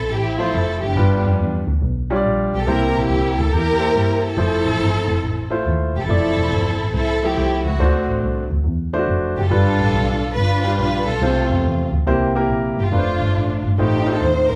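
A lush, expressive bowed string section carries the melody over a dark, smoothly bowed double bass from the start, joined at 0.4 seconds by a clear grand piano with deep bass accompaniment, in a hopeful, uplifting, swung uptempo gospel passage cut from a longer piece and played live together in a large studio room with moderate reverb.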